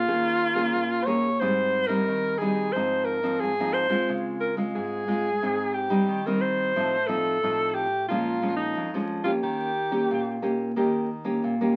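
The recording sounds like a very old 78 rpm record, with vinyl crackle over a studio ambience that gives the short fragment a wet, brief room tail. It is a samba with a bittersweet, nostalgic mood, moving in a straight 4/4 feel. Up front, a warm alto saxophone plays the melody as a jazz-style solo, punchy and forceful with vibrato and a smooth top. Beside it, a full-bodied nylon-string guitar provides fingerpicked, classical-style acoustic accompaniment, moving through chords such as Abmaj7, Dbmaj7 and Bbm7 before settling on Eb7. The saxophone stops at 10.4 seconds, leaving the guitar alone until 11.8 seconds.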